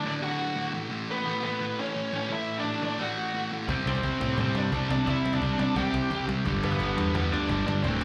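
Rowdy and rebellious, this short punk rock cut from a longer piece charges along at 173 BPM in a straight 4/4, captured as a live gig heard through the venue's PA with light club reverb. From the start, a bluesy overdriven lead guitar carries the melody up front with distortion and delay, while a sludgy distorted guitar, picked and up front with overdrive, grinds out the riff beneath it. At 3.7 seconds the band fills in: a second sludgy distorted guitar plays a riff in the background, joined by a bright, scooped, double-tracked overdriven electric guitar with slapback echo. A picked electric bass, direct and amped, anchors the low end, and a woody cajon with faint snares and hard hands sits in the background. The harmony moves from D to A, then to a C power chord at 3.7 seconds and G at 6.5 seconds.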